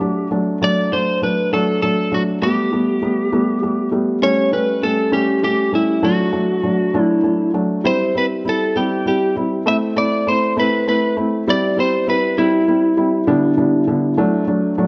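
A lightly driven electric lead guitar carries the melody up front, its picked, compressed tone slightly broken-up, above a soft, felt-muted upright piano whose mellow, intimate accompaniment sits close beside it. This tender, romantic pop passage in 6/8 moves from D through Gadd9, A7, C and Am before settling back on D at 14.2 seconds. A wet recital-hall reverb and a dark, warm production give the two parts a roomy glow in this short excerpt from a longer piece.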